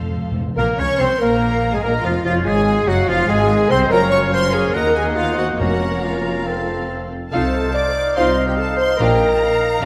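Classical and stormy, this fast romantic orchestral movement in Bb minor moves at 143 BPM in a rubato 4/4, opening with a round, soft-mallet timpani fill beneath the strings before the clarinet, oboe, bassoon and horns join at 0.6 seconds over a progression that passes through Gbmaj7 and F7/C to land on Bb. Lush, vibrato-rich violins carry a distant melody while a second violin line sits higher, supported by smooth violas, expressive cellos and even double basses, with the mellow French horn section holding sustained chords in the background. A clear oboe, a bright but very quiet clarinet, a bassoon and an airy flute ensemble entering at 1.4 seconds add woodwind color, and the timpani return briefly near 5.6 and 9.0 seconds, all set in a wet scoring-stage reverb.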